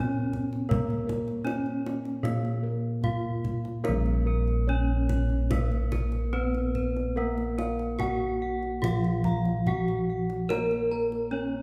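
Round, beating bronze bossed gongs carry the bass up front in this hypnotic, stately Javanese gamelan passage in Bb pelog at 73 BPM with uneven beats, as a bright, shimmering metallophone struck with a horn mallet plays the melody over a mellow, softly padded metallophone accompaniment, distant gentle gong arpeggios and a tight, hard-handed kendang, while a second dry, close-miked metallophone adds arpeggios from 3.9 s, all heard from further back in a reverberant recital hall.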